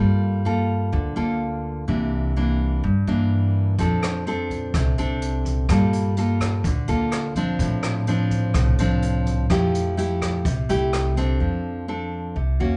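Set in a straight 4/4 at 126 BPM, this relaxed, romantic bossa nova in F major is a short excerpt cut from a longer piece, with an up-front, full-bodied nylon-string guitar fingerpicking chords such as Gm9, C9 and Fmaj9 with audible finger squeak, over a woody pizzicato upright bass. A brushed jazz kit of hi-hat, punchy kick and rim click joins at 3.8 seconds and drops out at 11.3 seconds, its top rolled off. The trio plays live together in one large studio room with moderate reverb, giving the sound a warm, dark sheen.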